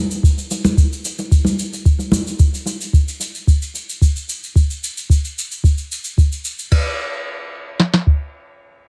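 Echo-heavy and slightly smeared by lossy compression, this short cut from a sunset chillout piece sits in a small room and moves at a straight 111 BPM in 4/4 with a blissful, smooth mood. A soft vintage rhythm box plays up front from 0.2 to 8.2 seconds, its dry analog kick deep and its snare crisp, while cabasa and crash cymbal add dark, brushed, rolled-off colour through analog delay until 6.8 seconds. Warm, hard-handed congas ring up front in a live room from 0.6 to 2.2 seconds, also sent through analog delay.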